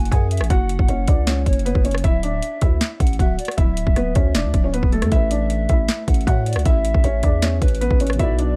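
A hard-clipped kick, sharp snare, metallic hi-hats and rim clicks from an electronic trap drum kit sit up front in this brooding, dark hip hop excerpt, which moves at 156 BPM in 4/4 with a half-time feel. Beneath them, a growling, buzzy 808-style bass with a fast attack and decaying sine tone is equally forward, reaching down to D1. A soft, felt-muted upright piano carries the melody with short sustain, its tone filtered and trailed by digital delay, while a hollow, wooden pan flute adds a pure, straight-toned second line with a crisp chiff and its own delay. At 5.1 s a boxy concert grand piano with deep bass enters in the background, filtered and mellow, as the harmony moves from F#5 through Dsus2 to Asus2. The small room ambience and dark production give the whole a close, intimate weight.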